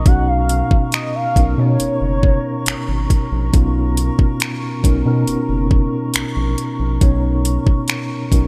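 Contemporary R&B, dreamy and smooth, built on a Bmaj9 chord, with a velvety synth lead that carries the melody with chorus and tape echo before dropping out at 3.1 seconds. A mellow tine electric piano sits up front in accompaniment, a deep, round analog bass anchors the low end, and a distant, airy flute section holds soft, hollow chords. An electronic drum kit enters at 0.1 seconds with knocking kick, metallic hi-hats and finger snaps, all within light reverb in this short cut from a longer piece.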